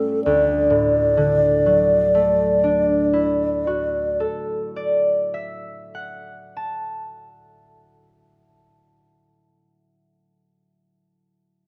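An alto flute and a concert harp begin together at the opening of this brief impressionist classical passage, cut from a longer piece, with both parts sitting up front in a moderate recital-hall reverb. The flute carries the melody between A4 and D5 with a hollow, airy tone, a crisp attack, lifted highs and vibrato, while the fingerpicked harp spreads a mellow, ringing accompaniment from D2 to A5 beneath it. The harmony rests on a Dadd9 chord in D major, giving the moment a pastoral, luminous mood. At a very slow 31 BPM in 4/4 with a rubato feel, the music seems to float rather than pulse. The flute falls silent at 4.2 seconds, leaving the acoustic harp to sound alone until 9.6 seconds as the hall's reverb lingers around it.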